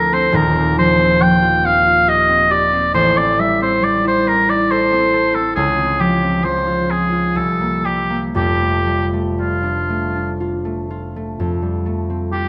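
Luminous and dreamy, this short passage cut from a longer impressionist classical piece pairs oboe and concert harp in F major. It moves in a rubato 3/4 at around 57-70 BPM. The clear oboe carries the melody with a light vibrato and a vintage, classical-style character, sitting up front as the solo voice between F4 and G5. Beneath it, the concert harp provides a mellow, ringing accompaniment, fingerpicked and also up front, reaching from a deep Eb1 to A4. The harmony drifts through colorful chords such as Eb69, Am7, Dbmaj7 and C7sus4 before settling onto F69, and a new section opens on Fadd9 at 11.4 s and runs until the cut at 12.5 s. Both instruments are bathed in a wet recital hall reverb that lends the duo a soft, spacious glow.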